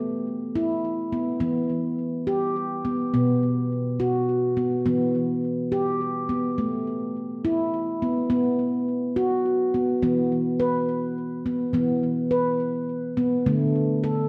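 This is meditative world music for tuned percussion: a hypnotic, unhurried passage in 6/8, cut from a longer piece. A single handpan carries everything from the start. Its ringing, stainless-steel tone sits up front and mellow, spanning B2 to B4, with a touch of delay trailing each note. The harmony drifts among A, E minor and B chords before settling onto E and then D in a second passage that begins at 10.0 seconds and runs to 14.3 seconds. A wet echo chamber reverb and a small room ambience surround the instrument, and the dark production keeps the mood inward and calm.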